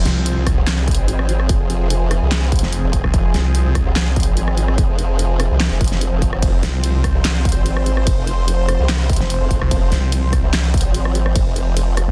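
A half-time 4/4 groove drives this aggressive, menacing stretch of heavy wobble dubstep: a punchy, layered electronic kick and a big-room dance kit with a huge snare, handclaps, hi-hat, ride cymbal and rim clicks sit in studio reverb beneath an up-front, formant-swept wobble bass with chorus and overdrive and a growling, saturated sawtooth bass that drops out between 3.8 and 6.6 seconds, while a lush, bright, detuned unison pad holds sustained chords through chorus, phaser and sidechain pumping, all in a dense, heavily limited modern master.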